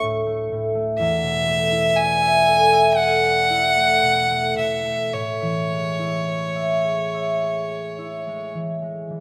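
Rubato 4/4 at a slow 52 to 62 BPM gives this short impressionist classical duo in A major, tuned to A4 = 441 Hz, a luminous, pastoral calm. A thumb-plucked concert harp rings out warmly up front as accompaniment from 0.0 s, moving through A/D, E9sus4 and Amaj7, while a single bowed violin enters at 1.0 s with a clear, smooth, even melody and vibrato, sitting close and slightly louder than the harp. A moderate scoring-stage reverb surrounds the pair until the violin closes at 8.5 s and the harp at 9.2 s, as the passage is cut from a longer piece.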